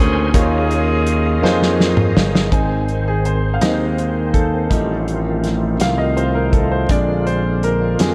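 Slow gospel in 6/8 at 55 BPM in Ab major, jubilant and uplifting, this excerpt opens with a distant, roomy horn section carrying the melody through tape echo for its first 1.8 seconds. Beneath it sit a brilliant baby grand piano, a reedy tonewheel organ holding chords through a fast rotary speaker with key click and chorus vibrato, a glassy, punchy slap bass, and an up-front soul drum kit with a fat snare and tight kick that enters at 0.3 seconds and plays a fill before the piano takes a long-sustained solo from 2.5 seconds, moving through Ab, F7/A and Bb7 in light reverb.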